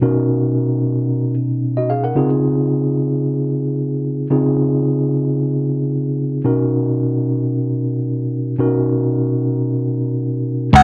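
A danceable, feel-good clip of early-eighties boogie funk opens on a mellow tine electric piano. It plays alone, clean and up front through its built-in speakers, moving from Cbmaj9 to Dbmaj9 and back. At 10.7 seconds a punchy, amped vintage slap bass sounds a single low Db, and at 10.8 seconds a dark, overdriven lead guitar joins with one picked high note. The guitar is the most forward part, while the bass stands slightly behind it and the piano sits softer still. The sound is a dry, close 1970s-style studio recording, touched with light reverb and digital ambience.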